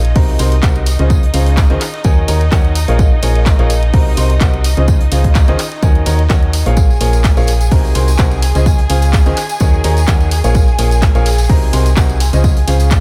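Piano house at 127 BPM in 4/4, with a light 16th-note swing and a bittersweet, soulful mood, cut from a longer piece. An overdriven, punchy electronic kick plays alongside a round, dark FM bass that sits up front with a fast attack, the bass pumping against the beat, while a tape-warm garage kit adds handclaps, hi-hat and ride cymbal in studio reverb. A clear but boxy grand piano riff with short sustain enters at 0.2 seconds, pumping and trailed by dub echo, over a veiled, muted violin section holding distant sustained chords with vibrato and soft attack. Further back, an acoustic rock kit supplies filtered hi-hat, snare and tambourine through reverb and echo, and a separate tambourine joins at 6.8 seconds. The harmony cycles through Cm7b5, Dbmaj7, Ebm7 and Bbm7, giving the loop its yearning pull within an echo-heavy mix with light reverb.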